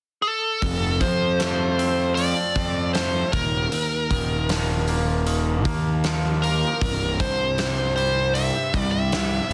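A nasal, overdriven lead guitar with a parked wah carries the melody up front from 0.2 s, joined at 0.6 s by clean, twangy fingered guitar arpeggios with a warbly pitch drift, a dark, round fuzz bass and a big, mid-forward acoustic rock kit with a tight kick and rolled-off top, as this anthemic, bittersweet quiet-loud alternative rock excerpt moves at 78 BPM in straight 4/4 over F, Ebsus2 and C, with light small-room reverb and a dense, heavily limited modern master.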